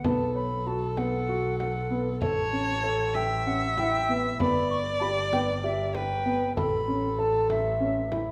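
Hypnotic and urgent, this excerpt of contemporary chamber music moves in a straight 7/8 at 193 BPM counted in eighths, circling B minor through B5, A, G6 and A chords. A pure, straight-toned concert flute carries the melody with a crisp attack over an expressive, up-front bowed viola line full of vibrato and portamento, while a dark, mellow grand piano plays arpeggios and a clear, distant bowed double bass holds the low end. A frame drum struck with hard hands sits in the background, and a very quiet, bell-like celesta, delicate and slightly out of tune, adds texture from 0.4 to 6.6 seconds, all bathed in the reverb of a recital hall.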